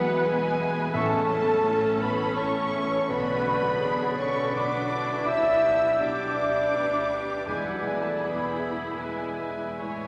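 Awash in cathedral reverb, this tender, moving cinematic excerpt at 82 BPM in a rubato 3/4 sets a focused violin section melody over mellow French horn chords and a lush viola section, while a bright flute section, a smooth second violin section, a clear clarinet from 0.9 s and a distant oboe from 1.0 s add second lines, a dark grand piano and ringing fingerpicked harp fill out the accompaniment, cello and double bass sections carry the bass, and very quiet timpani sound at 0.9 s and 7.5 s as the chords move from E through A, Bm and G/B back to E.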